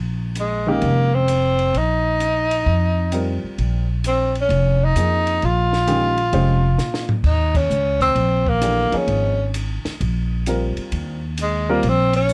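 Hypnotic and searching, this modal jazz excerpt in Bb dorian swings at 131 BPM in 4/4, cut from a longer piece and tuned slightly sharp of standard pitch. A woody, thumpy pizzicato upright bass opens alone, and the breathy tenor saxophone soon takes the lead with a mellow tone, light vibrato, soft attacks and scooped notes, sounding somewhat distant and roomy even as it sits up front. A compact cocktail drum kit with a dark, smooth, rolled-off top, a high-tuned snare and a punchy kick joins almost at once, sitting low in the blend. A slightly detuned upright piano with a woody, present character and short sustain comps beneath, entering just after the others. The harmony rests on Bb9sus4 before shifting to Eb9sus4 at 7.3 seconds, ushered in by a drum fill from 6.8 seconds and followed by a band accent at 7.5 seconds. Close, detailed miking with little reverb keeps the sound intimate.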